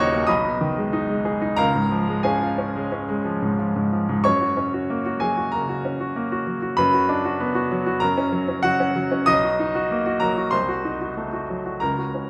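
A polished, up-front baby grand sits in a wet recital hall reverb, its clear tone ringing from deep bass up into the bright treble in this short cut from a longer classical study. Heroic and brilliant in mood, the solo virtuoso piece moves in a rubato 4/4 feel, with a new passage arriving at 4.3 s that turns toward richer harmonies, including a major-seventh chord at 9.3 s and a diminished chord at 10.5 s just before the fragment ends.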